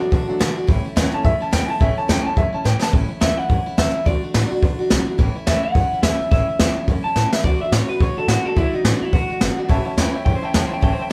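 Upbeat and retro, this swinging rockabilly snippet opens with a bright, polished upright piano solo over a boxy picked archtop guitar with audible finger squeak, a woody, thumpy pizzicato upright bass and an up-front brush kit with a boomy kick. At 3.2 seconds a twangy, slightly broken-up lo-fi electric guitar through a small old amp takes the melody, and the piano returns at 9.7 seconds. Drum fills arrive at 2.7 and 7.2 seconds, and the band sounds as if it is playing live together in a moderately ambient studio room.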